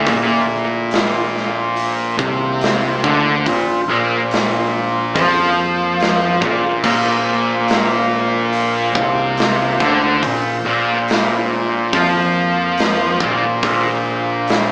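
A thick, dark fuzz guitar sits up front, double-tracked and heavily distorted as it picks out a sludgy riff in the low register through this slow stoner and doom metal excerpt at 71 BPM in 4/4. Beneath it, a bright, growly fingered electric bass with overdrive adds a punchy, direct edge from the background. A big acoustic rock kit enters at 0.1 seconds with a punchy kick, medium-tuned snare, hi-hat, crash and bright cymbals ringing in a large room, just as the harmony settles on a Bb5 chord. Hovering behind the band is an eerie, metallic drone of inharmonic sustained chords with a slow attack and long release, thickened by chorus and its own reverb. The whole group sounds like a band playing live together in one large studio, with moderate reverb and a small-speaker character that heightens the ominous, sludgy mood.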